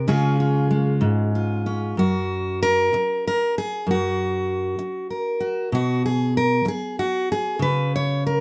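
In a loose, rubato 6/8, a lone fingerpicked steel-string acoustic guitar with a full-bodied dreadnought tone, captured up front by close, detailed microphones with light reverb, moves from C# to F# and on to B5 in this gentle, hopeful folk fragment cut from a longer piece.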